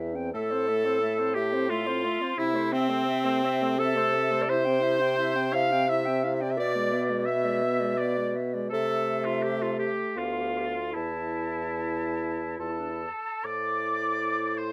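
A mellow bassoon stands out at the front of this short classical passage, carrying the bass line from D2 to C3 with a smooth top and light vibrato beneath a slow, rubato romantic movement for wind quintet in 3/4. The mood is melancholic and solemn, the tempo drifting between 68 and 89 BPM as the harmony settles into A minor from 4.5 s and moves through chords such as E7/B, Bdim/D and E7sus4 before returning to A minor at 13.4 s. An airy silver concert flute sings the melody from C5 to D6 with vibrato and tongued notes, sounding softer and more distant than the bassoon, oboe and clarinet. The French horn adds mellow, soft-attacked accompaniment with vibrato from the opening, while a clear oboe with light vibrato and a vintage colour takes a second line and a warm clarinet fills out the accompaniment, both entering at 0.3 s. Light reverb and close, detailed microphones keep each wind voice distinct in this excerpt cut from a longer piece.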